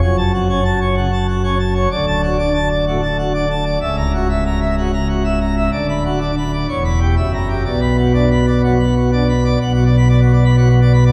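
A solo pipe organ on full plenum opens this dramatic, stormy classical toccata fragment, cut from a longer piece and running just over 11 seconds. The organ stands up front with a brilliant tone, its mixtures adding bite to a full, romantic voicing that spans from C#1 to B5. The music moves at 126 BPM in a straight 4/4 in B minor, tuned to A4 = 439 Hz, with harmony passing from F#m through D and F#7/C# to Bm/D, then tightening through C#m7b5/E and F#7b9 before settling on Bm at 7.7 seconds. A wet church reverb with a 3.6-second decay surrounds the sound, and the listener seems placed further back in the room. A new section begins at 9.6 seconds and carries the fragment to its close.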